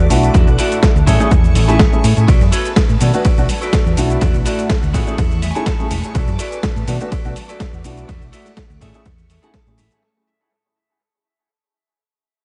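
Filtered disco house with a sensual, groovy swing, cut from a longer piece and fading out from 2.3 s, in which a punchy, up-front electronic kick and a round, hollow-body fingered bass anchor a gritty sampler-style kit of hi-hat, ride cymbal, shaker and snare; very quiet tube shaker and congas add soft-handed vintage percussion; a mellow baby grand piano with audible action noise plays phased accompaniment; a twangy clean electric guitar picks a dub-echoed riff with fills at 5.2 s and 9.3 s; and a lush sawtooth string machine holds chords in the background, while the strings, guitar, bass, piano and kit pump to the sidechain in a dry, echo-heavy mix.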